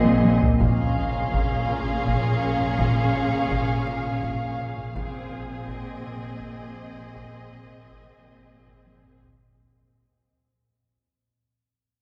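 A veiled bed of muted strings opens this eerie, uneasy suspense cue at 82 BPM in 3/4: con sordino violins carry a hushed melody over a second violin line, lush violas, a soft high violin texture, and dark cellos and double basses sitting low in the background, all bowed with vibrato and drifting between Ab/Bb and Bbm7. A ringing, fingerpicked concert harp repeats a low figure alongside them, while a close taiko ensemble struck with heavy sticks plays throughout, with fills at 0.1 and 8.9 seconds. The whole fragment, cut from a longer piece, fades out across its length inside a cavernous cathedral reverb with a faint mains hum.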